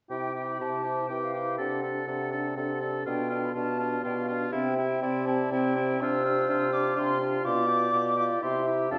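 A quick, spirited classical-period movement for wind quintet in C major at 123 BPM in 3/4, played with a cheerful rubato feel and tuned slightly low at A4 = 436 Hz, in what is cut from a longer piece. An airy, distant concert flute carries the melody high above with vibrato and expressive tonguing, a vintage-toned oboe sings a warm second line, a clear French horn with light vibrato supports the harmony, and a mellow, soft-attacked bassoon sits up front on the bass, while a dark, smooth clarinet joins the accompaniment in the background from 0.6 seconds. The chords move from C through D7/C and G7/B and back, all set in a wet recital-hall reverb with a church-like ambience and a gently rolled-off top.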